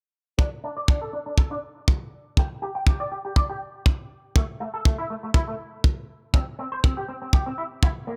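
Nu-disco cut from a longer piece, sleek and groovy at 121 BPM in 4/4, with a bright, twangy clean electric guitar riff through an envelope filter, ensemble chorus, 12-bit sampler grit, low-pass filter and digital delay sitting behind a tight, up-front acoustic kick drum in a small room, with a filter sweep on the guitar running from 0.4 to 8.2 seconds.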